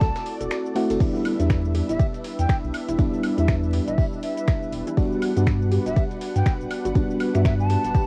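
Through a haze of cassette tape and vinyl crackle, this late-night deep house excerpt in E minor at 121 BPM sets an airy, hollow jazz flute melody, touched with analog delay, over a chorused FM electric piano, a smooth detuned analog pad, a warbling lo-fi pluck arpeggio in the background, and a round sine sub bass, all pumping against an overdriven kick that drops out from 0.5 to 1.0 seconds, while a deep house kit of metallic hats, shaker, snaps, woodblock and crash rides over a gritty, pitched-up breakbeat layer of hats, ride and high-tuned snare as the chords move from F#m7b5 to Em7 to Gmaj7.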